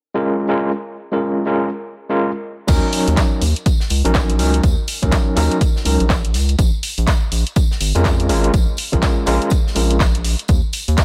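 Deep house at 123 BPM in E-flat minor, warm and hypnotic, with a swung 16th-note feel in this short cut from a longer piece. A gritty, barky tine electric piano, overdriven through a combo amp with medium tremolo, sidechain pumping and tape echo, plays stabs alone over Bbm7 until the drop at 2.7 seconds. Then a punchy overdriven electronic kick, a round, deep analog bass with sidechain pumping, a layered house kit of crash, handclaps and bright hats, and a natural acoustic kit of hi-hat, medium-tuned snare and tambourine sitting in the background all come in together, moving through Ebm7 and Bbm7 in a small room.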